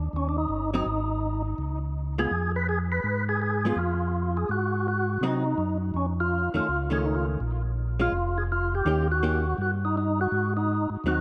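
Swinging eighth notes at 165 BPM in 4/4 drive this greasy, soulful jazz excerpt in Ab mixolydian, cut from a longer piece. A mellow tonewheel organ holds down the bass from the first moment, its round, dark tone turning through a slow rotary speaker up front in the mix. At 0.2 seconds a second tonewheel organ takes the melody, fat and lightly overdriven, with second-harmonic percussion, key click, chorus vibrato, analog delay and the same slow rotary spin. A hollow-body jazz guitar joins at 0.7 seconds with compressed, picked accompaniment, its electric sound kept clean through an analog chorus. The changes move from Ebm through Db7 and a Faug7 before settling on Ab7, and a moderate plate reverb soaks the whole blend in a dreamy haze.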